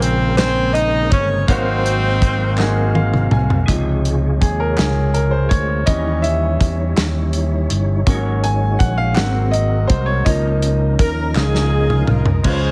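Jubilant and soulful, this slow gospel excerpt in 6/8 at 55 BPM in Db major opens with an edgy tenor saxophone carrying the melody with light vibrato and tape echo alongside a tight saxophone section, over clear grand piano, a mellow, round tonewheel organ in the background with slow rotary speaker and chorus vibrato, punchy fingered electric bass, a soul drum kit with dark cymbals and a tight kick, and hollow group handclaps. After a piano and drum fill, the grand piano takes a solo from 3.7 s as a very quiet French horn section adds sustained chords, with the saxophone section returning at 11.0 s. The mix has light reverb and a heavily compressed radio sound.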